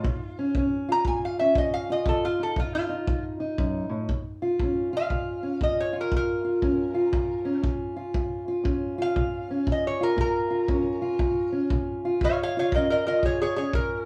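A moderately roomy live studio sound frames this brooding, soulful acoustic country blues excerpt in Bb minor at 118 BPM with a swung 4/4 feel, where a metallic, nasal lap resonator guitar played with a steel bar and fingerpicks carries the up-front slide melody, a boxy parlour steel-string guitar fingerpicks the accompaniment through Bbm, F7(no3) and Gbmaj7, and a tight, rolled-off kick drum played with brushes sits beneath until 13.9 seconds.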